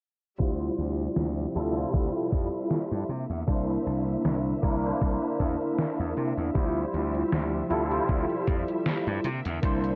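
Melancholic and hazy, this vaporwave excerpt drifts at 78 BPM in D minor, cut from a longer piece and carried by a lightly swung 4/4 groove. A barky tine electric piano, bright and clean through a combo amp, sits up front with ensemble chorus and analog delay, voicing chords that move between Dm11 and C9. Beneath it, a gritty slap bass with overdrive gives a punchy, amped low end, while a thumpy electronic kick and a detuned 8-bit drum machine supply hi-hat and a medium-tuned snare, both coloured by vintage 12-bit sampler grit and a tape-warm, small-room character. A clear symphonic string section holds lush, bowed chords with vibrato in the background. The whole recording has a dry, gritty hardware and cassette tape sound in a digital ambience, passed through a low-pass filter, with a filter sweep running from 0.4 to 10.0 seconds.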